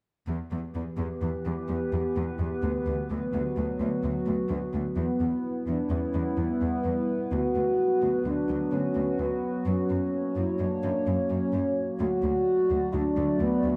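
A bowed, warm cello section opens this brooding, relentless cinematic excerpt in 5/4, holding a low bass line beneath a deep, detuned analog pad whose sustained chords are colored by chorus and phaser, before a mellow, soft-attack French horn section enters up front at 5.0 s with its own sustained chords as the harmony moves from E minor and B minor over D toward F# and D, heard within a moderate recital hall reverb.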